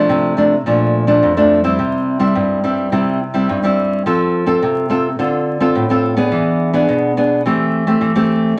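Sunny and festive, this short cut from a longer samba at 106 BPM in F major features an up-front, fingerpicked classical nylon-string guitar, acoustic and warm, playing alone from 0.0 to 8.5 seconds through F6/C, Bbmaj7, C, F, Dm7, E7 and Am7/E, set in the moderate reverb of a large studio with a layer of vinyl crackle.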